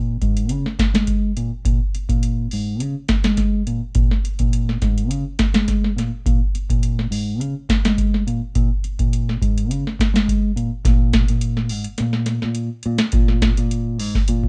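Driving and hypnotic, this afrobeat groove in Bb minor moves at 104 BPM in 4/4 with a light sixteenth-note swing. A dark, round fingered electric bass, direct and amped, opens the excerpt alone, and a booming analog drum machine with a deep kick, tonal snare and metallic hats joins at 0.2 s, both sitting up front. The pair sound like a band playing live in one room under light reverb with a rolled-off top end, and the music shifts into a new section at 10.8 s before this cut from a longer piece ends at 14.5 s.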